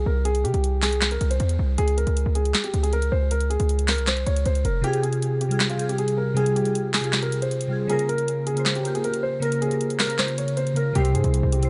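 The sound is dry and close, with little reverb and a soft-edged top end, on this short menacing, eerie cut from a longer trap track at 157 BPM in a half-time 4/4 feel, set in F minor. A dark, mellow concert grand piano carries the melody from the start, its intimate tone showing audible action noise and a vintage smoothness, with delay trailing its notes as it moves from C5 to Db5. A heavy, punchy 808-style bass with a sine body and a noise layer sits up front alongside it, then drops out at 4.8 seconds, when glassy, detuned digital keys enter with chorus and a filter sweep to carry the chords Fmadd9 and Bbm. The electronic trap kit comes in at 0.3 seconds, with a sharp snare, bright hi-hats and handclaps pushed forward. The kick and 808 return at 11.0 seconds as the harmony lands on C.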